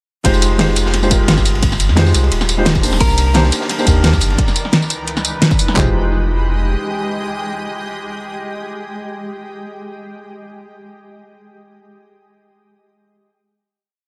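Liquid drum and bass with a melancholic, lush mood, opening straight into a drop where a dark, mellow concert grand piano plays syncopated chord stabs with dub echo over a round sine sub bass holding long gliding notes, two layered electronic pop kits driving rolling two-step drums with a punchy kick, fat snare, claps and metallic hats, and a quieter gritty breakbeat loop with a rolled-off top tucked beneath. A clean, scooped electric guitar offers a brief echoing call phrase in the background at 3.0 seconds, and a shimmering, ethereal granular pad with chorus and sidechain pumping enters at 3.6 seconds. The drums drop away by 5.8 seconds, leaving piano, pad and, briefly, bass to ring out a final chord in an echo-heavy mix with some lossy compression artefacts.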